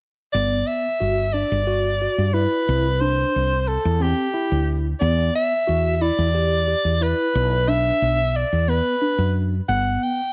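Set in a straight 7/8 at 180 BPM counted in eighths, this driving, intricate progressive instrumental moves with an uneven pulse from the very first moment. A breathy soprano saxophone carries the melody up front from 0.3 seconds, its clear, present jazz-style solo voice marked by light vibrato and scooped notes. Beneath it, a tine electric piano plays arpeggios through a phaser; its worn, slightly out-of-tune, clean sound comes through a combo amp. A woody fretless electric bass anchors the low end with a dark, round, punchy tone that sits close and direct, with a hollow-body character. The harmony moves from Gmaj7 through C, Em7 and Bm before returning to Gmaj7 near 9.7 seconds. A light reverb and small-room ambience surround this brief cut from a longer piece.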